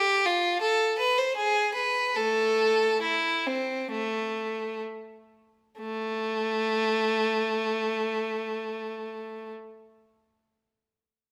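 A baroque-style suite movement for unaccompanied violin in A minor, this short classical excerpt unfolds in 4/4 at a flexible 60-85 BPM, its rubato phrasing giving it a solemn, introspective character, and the tempo slows through the opening 5.8 seconds before a new section begins. The lone bowed violin sits up front, its tone clear, smooth and even with vibrato, ranging from A3 to C5 and tuned to A4 = 442 Hz. A moderate recital hall reverb surrounds the instrument, and the playing ends at 9.5 seconds.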